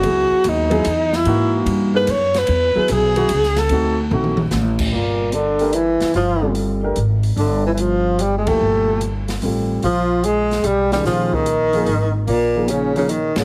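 Heavily compressed with a radio-like sound and set in a moderate large studio reverb, this cut from a longer modal jazz piece moves in a swung 3/4 at 147 BPM, cool and spiritual in mood. A tenor saxophone with vibrato, subtone and a soft attack carries the melody up front as the featured soloist in the opening section, while a dark, mellow concert grand piano accompanies with deep bass through chords such as Dbm11 and D7b9. The pizzicato upright bass is woody and growly with steel strings and sits up front, and the airy, polished acoustic drum kit brings dark cymbals, a medium-tuned snare and a boomy kick, with a drum fill between 4.1 and 4.5 seconds. At 4.9 seconds a brilliant, punchy trombone enters as a second line, forceful with scooped notes and light vibrato, as the harmony moves to Gm11 and later Bbm11. A band accent lands at 8.4 seconds.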